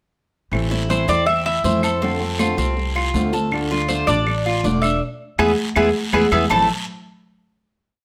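A short, nostalgic Cuban son and guajira piece in A harmonic minor at 160 BPM opens at 0.5 s with a dark, fingerpicked steel-string acoustic guitar strummed with muted slaps and finger squeak, a thumpy pizzicato upright bass playing a tumbao that anticipates the chords, and background percussion: woody claves on a two-bar time line, high-tuned congas with slaps and open strokes, and a raspy, close guiro. Two Cuban tres parts follow, one bright with an arpeggiated guajeo and the other up front carrying a motif-based, song-like melody on metallic double strings. The band hits an accent from 5.0 s, then settles on a final A5 chord at 6.5 s, all in a moderate studio reverb.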